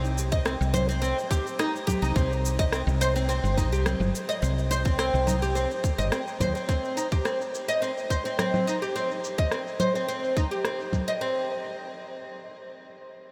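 A woody fretless electric bass, bright oud arpeggios and electronic cabasa, rim click and congas open this meditative organic downtempo excerpt together, with an electronic kick drum joining at 0.3 seconds at 106 BPM in 4/4 with a straight feel, resting on C minor. The plectrum-plucked oud, with its double strings, sits up front through an analog delay, ranging from C4 to Eb5. The bass is dark, round and hollow-bodied, colored by tube saturation and sidechain pumping, and it drops out at 6.5 seconds. The tight kick sounds tape-warm and up front, while the percussion is low-pass filtered and carries a filter sweep from 2.2 to 11.2 seconds, both re-recorded in a small room. A huge ambient reverb soaks the dreamy mix, and after the harmony falls away at 11.2 seconds the oud rings on until 11.5 seconds.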